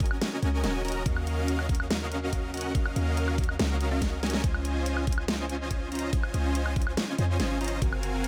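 The sound is dry and close, with little reverb, in this brief excerpt cut from a longer future bass piece. It is lush and bright, in Db major at 142 BPM in 4/4 with a half-time feel. A huge, thick supersaw riff built from detuned unison sawtooth with triangle and sub-octave layers sits up front, compressed and sustained with vibrato, sidechain pumping and a digital delay. Beneath it, a deep, boomy 808-style bass with a sine tone, a noise layer and a fast, decaying attack moves between Eb1 and F2, pumping with the sidechain as well. A knocking electronic kick drum sits up front alongside a produced dubstep kit of hi-hat, woodblock and a massive snare, with a drum fill at 4.2 seconds; the kick drops out at 7.9 seconds. The harmony moves from Ab9sus4 through Ebm9 to a Dbmaj9 arriving at 4.4 seconds.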